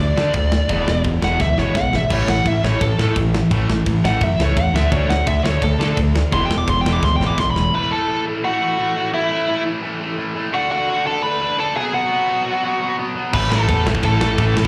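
Upbeat and energetic, this punk rock excerpt opens with a biting, overdriven lead guitar solo carrying slapback echo over a bright, compressed distorted electric guitar riff, a very quiet double-tracked distorted guitar, a raw garage guitar, a growling, punchy picked bass up front and a tight metal drum kit with a rolled-off top and fills; the bass, drums and two quieter guitars drop out around 7.7 s, leaving the lead melody and the main distorted riff, until they return at 13.3 s, all heard through a club PA with little reverb.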